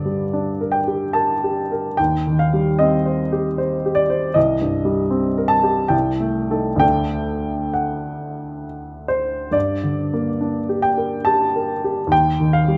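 A present, up-front baby grand piano plays alone throughout this melancholic, mournful romantic nocturne in G minor, moving in a rubato 3/4 at roughly 64-79 BPM across a range from C2 to A5, its harmony passing from Gm through Cm7 to a D chord at 6.8 s and back to Gm at 9.5 s, all captured by close, detailed microphones within a moderate recital hall reverb in a 12.8-second passage cut from a longer piece.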